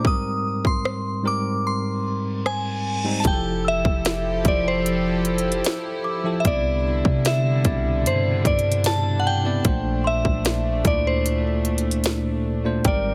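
Heavily compressed, radio-style digital ambience frames this romantic, smooth contemporary R&B excerpt at 75 BPM in F major, where a glassy, chorused FM synth bell carries the melody over a clean tine electric piano and an up-front trap kit with a hard-clipped kick, sharp snare and crisp hats; the kick drops out at 1.6 seconds, a reverse cymbal leads into 3.2 seconds, and then a deep, boomy 808-style bass and a reedy, gut-string studio string section with sidechain pumping arrive beneath lush major-ninth chords, while a delicate celesta with digital delay glints in the background from 3.6 seconds.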